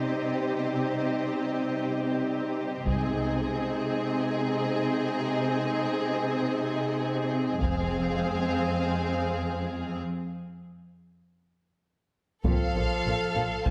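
Strings and French horns open together in free time, a violin section carrying the high melody above a second violin line while violas, an up-front cello section and sustained horn chords build a dark, relentless cinematic texture over C minor. The bowed violins sound lush and smooth-topped with vibrato, the melody shaped with a soft attack and expressive feeling, while the horns add warm, classical-style chords with light vibrato. At 2.9 s a rich double bass section and a close, dry taiko ensemble struck with heavy sticks add brief weight as the harmony shifts to Ab over C, and they return at 7.6 s when the chord moves to F minor. The violas fall away during a break, then the piece arrives at a new section at 12.5 s, where basses and taiko strike again, a tight trombone section joins in the background on F over Bb, and the violas come back at the very end. A moderate scoring-stage reverb surrounds the orchestra across this epic passage cut from a longer film score.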